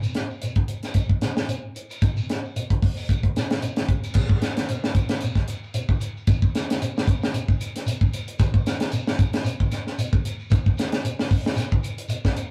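Afrobeat groove at 113 BPM in 4/4, with a lightly swung sixteenth-note feel that makes this short cut from a longer piece sound funky and defiant. A tight funk drum kit sits up front across the full 12.5 seconds, its kick, high-tuned snare, hi-hat and crash cymbal carrying a natural, acoustic small-room character. A shekere plays throughout, set further back, with a grainy, mellow tone that sounds as if it is in a large room. The arrangement shifts into a new section at 4.2 seconds and holds it to the end. Light reverb and a rough rehearsal-room quality give the recording a raw, unpolished feel.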